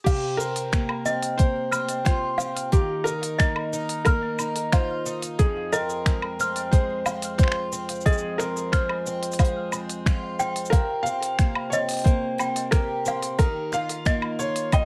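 A soft, felt-muted upright piano opens this delicate, intimate folktronica piece in F minor at 90 BPM, carrying the melody with audible action noise, plate reverb and digital delay, joined from 0.1 s by a clanky, bell-like toy piano second line that sounds slightly out of tune. A bright, shimmering twelve-string acoustic guitar picks octave-doubled arpeggios beneath them, while a soft electronic kick sits up front and an organic electronic kit adds crisp hats, crash cymbal, finger snaps, shaker and woodblock in a small room. The harmony moves from C7sus4 through Ebsus2 to a long stretch of Fm before returning to C7sus4 and closing on Ebadd9, in a passage cut from a longer piece.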